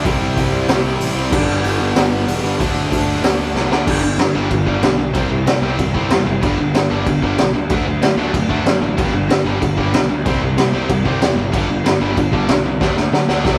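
Upbeat, energetic punk rock in G major at 188 BPM, cut from a longer piece, where a raw garage drum kit with a punchy kick, medium-tuned snare and gritty, saturated, up-front sound drives two bright picked guitars, one overdriven and one tightly distorted, sitting in the background over a growly fuzz-overdriven picked bass, all playing live in one stone room, with a half-time opening that breaks into full tempo after a drum fill at 3.6 seconds and another fill closing at 13.6 seconds over a C, G, D progression.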